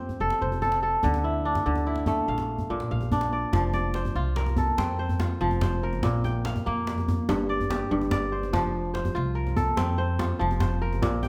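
Lightly reverberant and joyful, this fragment of West African string and xylophone music in F major moves at 96 BPM in a straight 12/8, with a ringing, crisp kora up front playing fingerpicked arpeggios, a woody pizzicato upright bass holding the low end, and a deep djembe with metal rattles and hard hands joining at 0.1 seconds.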